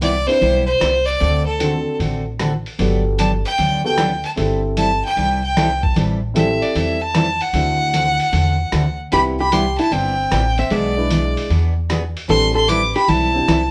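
A clear, up-front fiddle carries a cheerful, swinging western swing melody over bright picked acoustic guitar, woody pizzicato upright bass and a muffled, overdriven lo-fi drum kit, with a dark vintage upright piano entering at 0.3 seconds and a clean hollow-body jazz guitar adding a second line from 9.1 seconds, all in a moderate studio reverb that suggests a band playing live in one room.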